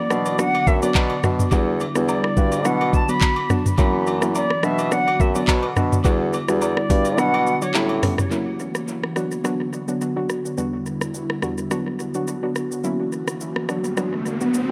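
Mellow and smooth, this afrobeats passage, cut from a longer piece, moves with a gentle 16th-note swing over a minor-key progression. A jazz flute with a chiffy, crisp attack and airy vibrato carries the melody through the first 8.0 seconds, sitting at a distance under tape echo. Beneath it, a soft, round pluck with ring-modulated edges and a filter sweep supplies the accompaniment, while a breathy, detuned pad holds sustained chords with chorus and a long release. A warm bassoon with light vibrato plays the bass line in a roomy, classical style, and an electronic afro-pop kit stays up front with a knocking kick, dark hats, handclaps, rim clicks, shaker and toms; the kick drops out from 7.2 to 8.3 seconds. Agogo bells and woodblock sit in the background of a live room during the opening section, and an electronic riser enters at 13.5 seconds to close out the echo-heavy mix.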